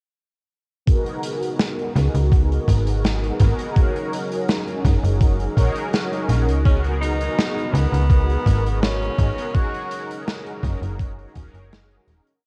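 Vaporwave in F# major at 83 BPM, dreamy and woozy, where a thumpy up-front electronic kick and a big-room rock kit's hat and snare carry a slowed groove under brassy, detuned synth brass chords with 12-bit sampler grit and analog delay, a very quiet warbling tape-like pad, and a snappy, metallic FM slap bass with tube saturation entering at 2.0 seconds, while a clear tenor saxophone plays hook phrases with tape echo from 6.7 seconds as the echo-heavy cassette mix fades out from 8.6 seconds.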